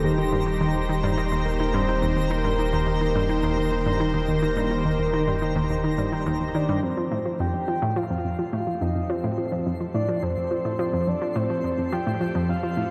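An up-front, nasal analog pluck riff drives this expansive, luminous stretch of ambient, sequencer-driven space music, alongside a dark, full-bodied octave-layered synth lead with phaser and vibrato, a lush, airy unison pad and a faint twinkling granular shimmer that both fade in from 6.8 s as a deep, round sub bass drops out, the whole mix set in a vast, echoing cathedral reverb.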